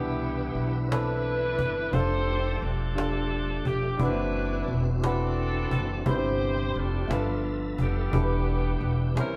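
A slow gospel sway in 6/8 at 58 BPM counted in dotted quarters and played straight, with a cajon joining at 0.2 s, its woody, close hand strikes carrying faint snares. Underneath, a dark, thumpy upright bass on gut strings is plucked up front and sits lowest in pitch. A warm, natural grand piano supplies accompaniment across a broad register, while a tonewheel organ holds full, lightly overdriven chords through a slow rotary speaker and chorus vibrato, sitting further back. On top, a bright, tight saxophone section carries the melody with vibrato, a soft attack and a vintage jazz-band character, placed up front. The harmony moves through Cmaj9, F69, D9, C/G, G13 and Em7 in C major, and the whole band plays live together in a stone room with moderate reverb, giving this reverent yet jubilant fragment of a longer piece its gathered, churchlike air.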